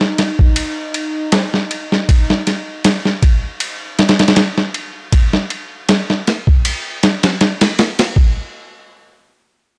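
Melancholic and smoky, this slow trip hop excerpt at 79 BPM with a light swing rides on an up-front, gritty, pitched-down boom bap drum kit of thumpy kick, medium-tuned snare and ride cymbal until 8.3 seconds, while a tense, string-like bowed drone with vibrato and reverb sustains on Eb4 for the first 2.1 seconds and a clay-shelled darbuka sounds briefly in the background at 1.3 seconds, all captured in a dry, gritty hardware sound.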